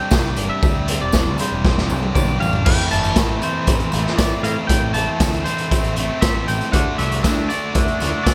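A bright, 1980s-style digital sheen with light reverb frames this bittersweet, cool indie rock excerpt in A minor at 118 BPM, where a clean, twangy electric guitar carries the melody with subtle chorus and delay over two bright, distorted fuzz guitar riffs (one thick, one compressed and very quiet), a growling overdriven picked bass, a jingly tambourine in the background and a gritty, punchy garage drum kit with gated reverb up front, whose fill at 1.6 s leads from Gsus4 into Amadd9 as a mellow, bell-like glockenspiel played with rubber mallets enters softly at 2.7 s before the harmony moves to D at 6.7 s.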